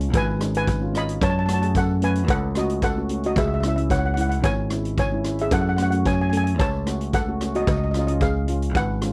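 Calypso at 112 BPM in a bittersweet, moody mood, this brief excerpt from a longer piece sets a dark, smooth lead steel pan played with medium rubber sticks up front against a mellow double-seconds pan in a boxy small room, a growly, bright fingered electric bass, a street-band drum kit with boomy kick, hi-hat and rim click and a rolled-off top, and a background cowbell entering at 0.2 seconds, all moving through C#7, F#m and C#m in a dry, close 1970s-style studio sound.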